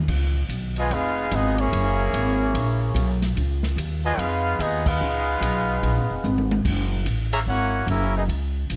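A mellow, vibrato-laced trumpet section leads this brassy, swinging big band excerpt up front over a woody, thumpy pizzicato upright bass and a polished drum kit with dark cymbals and a punchy kick, while a nasal, straight-muted trombone section sits in the background under light reverb, with a full-band accent at 4.8 seconds and a drum fill from 6.2 to 6.6 seconds.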